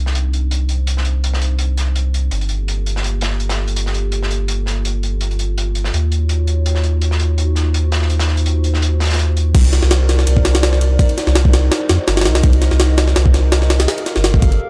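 A round, deep sub bass sits up front through this frenetic, atmospheric drum and bass excerpt, its soft dub tone given a touch of tube saturation as it holds low notes beneath the chords. At 166 BPM in C minor with a light swing on the sixteenths, the opening section pairs that bass with a crunchy breakbeat kit of hi-hat and snare, dark and rolled-off at the top, with a medium-tuned snare and the whole kit high-pass filtered and recorded in a small room. Floating quietly above, a warbling, nostalgic pad sustains detuned, wave-folded chords from Cmadd9 through Gm9 and Ebm9, coloured by chorus, reverb and vintage 12-bit sampler grit. At 9.5 seconds the drop arrives on Cm9 as a jungle sampler-style kit takes over, compressed and pitched up with a thumpy kick, high-tuned snare, crash and ride, re-recorded in a large room and pushed up front. The whole piece has a dry, gritty hardware sound with transformer saturation and lossy compression artefacts, running until 14.7 seconds.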